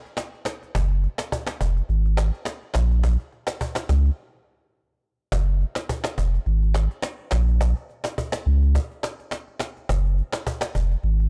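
Afrobeats at 105 BPM in Bb minor, this short cut from a longer piece moves with a hypnotic, mellow sway, its sixteenths carrying a gentle swing. A snappy acoustic cajon with snares sets the groove from the start, played with soft hands and sitting back in the balance. At 0.7 seconds a deep, round sine sub bass joins, up front and sustained, ranging from F1 to Db2 with a fast attack. A brief break arrives at 4.2 seconds before the groove resumes through to the end. The small room ambience is blown-out and overdriven, giving the sparse pairing a gritty, saturated edge.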